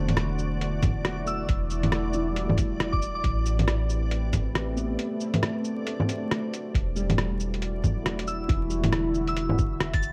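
A felt-muted upright piano with audible action noise, a deep, moody ambient pad with a sub octave and a round, soft 808-style bass open this nocturnal, melancholic future garage excerpt in E minor at 137 BPM, all three pumping to the sidechain while a reversed, granular swelling texture glimmers in the background until 6.7 s. A muffled, pitched-down sampler-style kit of bongos, cabasa, hi-hat and rim click sits up front with a 16th-note swing, joined at 0.8 s by a thumpy, compressed kick, as the chords move through Em9, Am9 and D7. A gentle, warbling FM bell with tape echo floats a high melody in two brief phrases, all of it set in a dark production with vinyl crackle and a moderate recital hall reverb.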